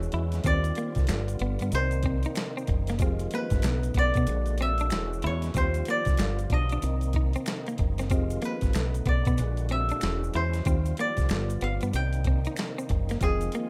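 A sultry, introspective neo-soul and R&B groove at 94 BPM with a swung sixteenth feel, this short cut from a longer piece sets a dry, woody koto melody, played with fingerpicks, over a mellow tine electric piano and a percussive tonewheel organ whose slow rotary speaker and key click sit in the background. A dark, round dub bass and a gritty, compressed boom bap kit with a thumpy kick sit up front, while a clean picked electric guitar with spring reverb adds a second line from 0.1 seconds and maracas with finger snaps and group handclaps sit far back. The harmony cycles through lush extended chords such as Eb69, G7, Cm9 and Fm9 in a rough home demo mix.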